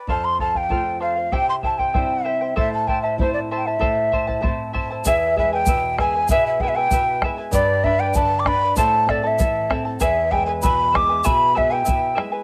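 A straight 2/4 pulse drives this earthy, festive Andean folk ensemble, with the dark, deep bombo sounding close and dry underneath from the start. Up front, a breathy large quena carries the melody with a crisp, chiffy attack and a straight wooden tone, set in plate reverb and a cassette-tape sheen. Beneath it, a fingerpicked charango adds a shimmering layer from its doubled strings, while a full-bodied nylon-string guitar supplies deep classical support from fresh strings, both sharing the same tape and plate treatment. A grainy, bright egg shaker joins at 5.0 seconds as the passage moves into a new section, where the harmony turns from F, C and A minor toward E, G and back to A minor. The home cassette recording sits in a moderate booth ambience, and the clip is cut from a longer piece.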